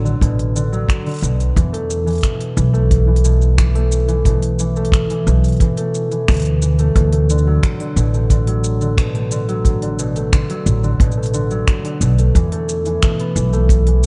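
Up front in the mix, a thumb-plucked concert harp rings out low arpeggios through tape echo over a woody pizzicato upright bass, a punchy brushed acoustic kick and an overdriven electronic kit of finger snaps, smooth hi-hat and shaker, as this pastoral, delicate folktronica excerpt drifts between D6 and Esus4 in a dark, small-room setting.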